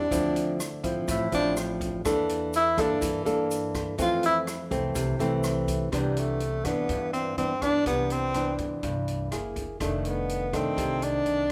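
A recital hall's moderate reverb surrounds this short, breezy bossa nova cut from a longer piece, giving it a roomy, romantic glow. Up front, a mellow tenor saxophone carries the melody with vibrato, subtone breathiness, scooped notes and a smooth top, taking a jazz-style solo through the first 5.9 seconds. Beside it, a thumb-plucked nylon-string guitar accompanies in a classical manner, its finger squeaks audible, moving through rich chords such as Dm9, Fmaj7 and Cmaj9. Underneath, a woody, thumpy upright bass plays pizzicato, while an open jazz kit with a natural small-room sound adds hi-hat, rim click and a boomy kick. A grainy, bright egg shaker sits in the background until 5.9 seconds, when the piece moves into its second section.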